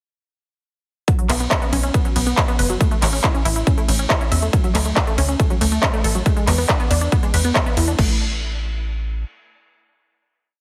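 A short, euphoric uplifting trance piece at 139 BPM opens at 1.1 seconds straight into a drop, where a punchy four-on-the-floor kick and crisp programmed hats, claps, ride and crash, both overdriven and up front, sound alongside a lush, detuned unison pluck arpeggio pumping with sidechain and trailed by digital delay, while a tight, wave-folded sequencer bass pulses off the beat from 1.3 seconds through chords of B5, A, Dmaj7(no3) and E5, before the drop gives way at 8.0 seconds to a final chord, all in a heavily compressed, radio-style mix with light digital reverb.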